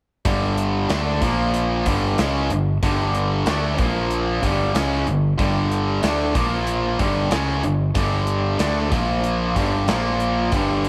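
Classic rock at 94 BPM in a straight 4/4, gritty and swaggering, cut from a longer piece: a gated 80s drum kit with a punchy kick, medium-tuned snare and hi-hat in a bright stone room starts at 0.2 seconds, joined at 0.3 seconds by a raw, overdriven garage guitar and a tight distorted guitar, both picked and up front, playing a G5 to Bb5 power-chord riff over a warm, picked electric bass, all set in a moderate spring reverb.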